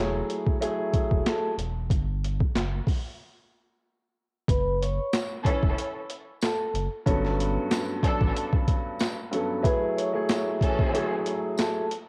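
A reflective, gritty boom-bap hip-hop excerpt at 93 BPM in 4/4 opens on a soft-mallet vibraphone melody, metallic and ringing with a slow motor vibrato. Beneath it sit a dark, mellow baby grand piano on an F#m9 chord and a deep, full sub bass of sine and triangle tones, and the drums enter at 0.3 seconds. The sampler-style kit is compressed, pitched down and overdriven, with a thumpy kick, a high-tuned snare and hi-hat, re-recorded in a large room and sitting up front with a light swing on the 16ths. After a chordless break, the harmony moves through F#m7 and Gmaj9#11 before settling back on F#m9. A jingly tambourine joins in the background at 5.1 seconds, a distant, lush string section adds bowed stabs with vibrato and portamento from 5.5 seconds, and the piano returns at 7.1 seconds. The vibraphone and strings carry analog delay, and the vibraphone, piano and strings share a cassette-tape colour, while the whole piece has the small-room feel of a home recording on cassette.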